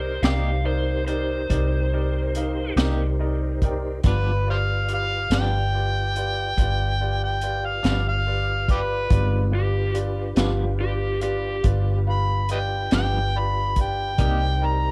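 A gritty, overdriven harmonica takes the solo from 4.1 seconds with scooped notes, tongue slaps and light vibrato over this brooding, mournful slow blues in 12/8 at 47 BPM, where a dark slide guitar with digital delay plays a second line until 11.6 seconds, a woody upright piano accompanies and adds a fill at 2.8 seconds, a flute-like tonewheel organ holds soft chords through chorus vibrato and a slow rotary speaker in the background, a round, foam-muted electric bass and a crunchy breakbeat kit with a tight kick and high-tuned snare sit up front, and a twangy clean electric guitar with tremolo fills out a dark, lightly reverberant mix moving from Cm7 to G7.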